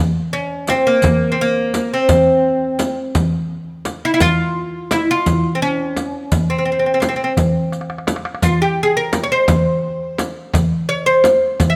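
A woody, fretless oud with double strings sits up front, carrying a longing, soulful melody in this Arabic maqam ensemble excerpt in 6/8, joined at 0.7 s by a small, high clay-shell darbuka played with soft hands, a close, dry frame drum struck with hard hands and a quieter riq with dark jingles, with a drum fill at 7.7 s, all set in a moderate recital hall reverb captured by close, detailed microphones.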